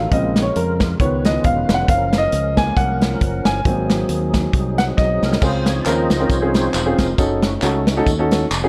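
Set in a dark, intimate small room with light reverb, this short cut from a reverent, hopeful uptempo gospel piece in Db major swings at 136 BPM as a woody, up-front upright piano takes the opening solo over a round fingered electric bass and a natural country drum kit with a punchy kick and medium-tuned snare, until a drum fill at 5.0 seconds leads to 5.4 seconds, where the fat, lightly overdriven tonewheel organ, sustaining chords through slow rotary speaker and chorus vibrato with audible key click, steps forward for its own solo while a vintage, band-limited layer of tube shaker and group handclaps joins in.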